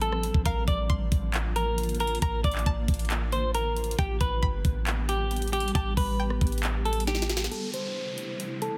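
A semi-hollow electric guitar carries the melody from the start, dark and clean with a hollow-body tone, sitting up front through a low-pass filter and tape echo, while a bright, twangy resonator pluck traces a second line higher up in the background, colored by chorus and its own tape echo. This short cut from a longer hip hop and trap piece moves at 136 BPM in 4/4 with a half-time feel, and its mood is hard-hitting yet melancholic. Underneath, a granular cloud pad holds sustained chords with a blurred, evolving, full-bodied texture and its own built-in reverb, while a clean 808-style bass booms deep and dark. An electronic trap kit sits up front with a knocking kick, sharp snare, metallic hi-hats, handclaps and rim clicks, and a drum fill runs from 7.1 to 7.5 seconds. At 7.5 seconds the bass and pluck stop as the harmony shifts from Bb/A and G to Am, and a downlifter enters alongside a filter sweep until 8.8 seconds. 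The mix carries light reverb and a dense, heavily limited modern master.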